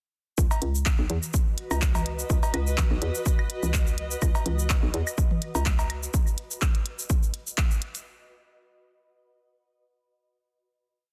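A punchy, overdriven four-on-the-floor kick drives this hypnotic, clinical minimal techno piece, alongside a hollow, bouncy FM bass playing a syncopated riff with sidechain pumping, clicky programmed hats, shaker and claps, electronic cowbell, woodblock and high tom blips in cross rhythm through digital delay, and a cloudy, reverb-washed granular pad of slowly shifting chords that enters at 1.6 seconds, set in a dry, dense, heavily limited mix.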